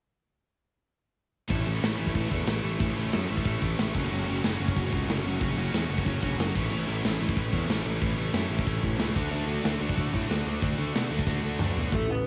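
This dry home recording on cassette is a short cut from a longer punk rock piece in A major at 184 BPM, with a rebellious, upbeat drive in straight 4/4. Two bright, distorted electric guitars, compressed and set back in the mix, play riffs alongside a scooped, high-gain guitar that is double-tracked. All three guitars carry cassette-tape grit over a progression of A, F#m, A and D. A growly, fuzzed picked bass with overdrive sits up front, while a big acoustic rock kit with a punchy kick, medium-tuned snare and rolled-off top drives the band from 1.5 seconds. A drum fill arrives at 11.3 seconds, and at 11.9 seconds a dark, smooth lead guitar with overdrive steps forward briefly to close the excerpt.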